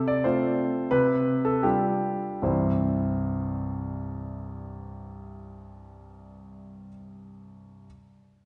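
In a two-beat metre with a flexible, rubato feel, this brief fragment of a classical-period piano sonatina has an elegant, cheerful character. A solo grand piano carries everything, its tone warm, smooth and slightly vintage, placed up front and ranging from deep bass to the upper middle register. Over the opening 2.4 seconds the pace slows down as the harmony rests on an F chord over a C bass, then moves to an open G fifth over C. A new section begins at that point and settles onto a plain C chord, running until about 5.7 seconds before the piano's last notes end at 7.9 seconds. A generous, wet concert-hall reverb surrounds the instrument, giving it the airy resonance of a church or large hall.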